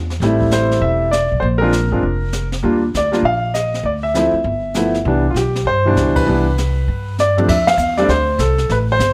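Warm and relaxed, this short excerpt from a longer jazz piano trio swings easily in four, cut from a piece already underway. The woody, thumpy upright bass sits up front with the pizzicato pluck of steel strings, while a clear, smooth grand piano with a vintage character carries the melody just ahead of it. Brushes on an airy, polished kit keep time underneath, with a high-tuned snare and a boomy kick set back in the mix among the hi-hat, ride, crash and toms. The harmony moves through Am7, Bb5, Ebmaj7, Dm7 and G13 to land on Cmaj7, and the trio hits shared accents at 6.1 and 7.6 seconds around a short drum fill that opens a new section, which rests on F6. A light reverb adds a touch of space, and the kit carries the sound of a studio room.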